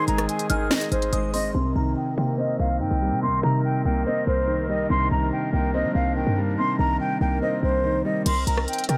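A half-time trap groove at 143 BPM in 4/4 opens this melancholic, brooding C minor fragment, with a crisp electronic kit of sharp snare, hi-hat, rim clicks, finger snaps and crash dropping out at 1.4 s and returning at 8.3 s beneath a punchy, tight 808-style sine bass. Up front, a breathy concert flute with vibrato and tape echo carries the expressive melody over a dark, vintage baby grand piano with long sustain and a smooth, clear woodwind section holding chords, all three softened by low-pass filtering. A delicate, tinkling FM bell with chorus and phaser glints in the background early on, and a filter sweep runs through the long middle stretch as the harmony moves from Ab to Cm7 in a small room ambience.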